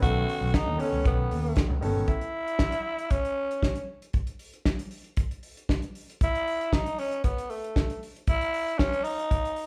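A growling tenor saxophone opens this glamorous, sultry disco excerpt, carrying the melody over a baby grand piano, a picked electric bass and a damped 70s drum kit, all sounding together on a B9 chord. The saxophone is raspy and gritty with a light vibrato, standing up front as a clear, pop-style solo voice. The piano has a natural tone and the amped bass is dark, round and punchy, but both stop at 2.1 s, leaving saxophone and drums alone until the cut at 9.7 s. The acoustic kit is dry and close, with a tight kick, a medium-tuned snare and hi-hat, its top end rolled off. The band plays live in one large studio room with moderate reverb, settling into a straight 4/4 groove.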